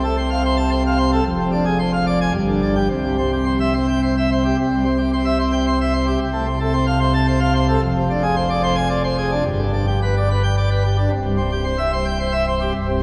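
A solo pipe organ on full plenum, its mixtures and baroque voicing lending a brilliant edge and a crisp chiff, sits up front in this jubilant classical toccata in triple metre. The harmony circles through a cadence that comes to rest on C major, then sets out again on a second, longer passage from 4.6 seconds that reaches its home chord once more near 11.1 seconds. A wet church reverb with a long 3.6-second decay surrounds the organ's range, from deep pedal notes to bright upper pipes, in a passage cut from a longer piece.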